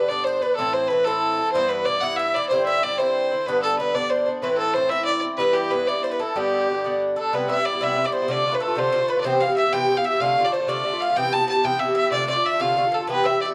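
A rollicking 6/8 Celtic jig drives this lively folk excerpt, led by a biting, nasal, earthy bowed fiddle up front with plate reverb, alongside a metallic, double-strung Irish bouzouki, also up front, picking the accompaniment, while a very quiet picked bowl-back mandolin and a distant, airy wooden flute with vibrato trace second lines, and from 7.3 s the harmony alternates between Cmaj7 and Dm7 inside a dark, warm studio sound.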